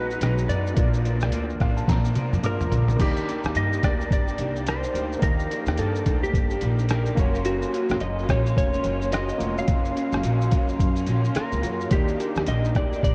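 A dark, slide-played lap steel guitar carries the melody through analog chorus and a diffuse ambient delay in this dreamy, nostalgic indie and bedroom pop piece, over muffled, pitched-down sampler-style drums with a fill from 1.9 to 3.0 seconds, a woody pizzicato upright bass up front, a twangy, slightly broken-up electric guitar with chorus and vibrato, and a clear upright piano in the background whose fill begins at 1.3 seconds, the whole mix soaked in huge reverb and cassette-tape haze.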